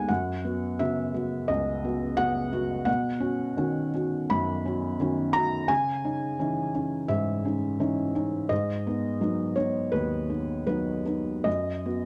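A soft, felt-muted upright piano plays alone from 0.0 to 12.1 seconds in this hopeful, peaceful neoclassical minimalist fragment, moving with a rubato 4/4 feel at roughly 74-88 BPM in B major, tuned to A4 = 435 Hz and spanning C#2 to B5 through F#sus4, Badd9, C#madd9 and G#m7 before returning to F#sus4, its mellow, intimate tone sitting up front with audible action noise inside a dark production and a moderate studio reverb.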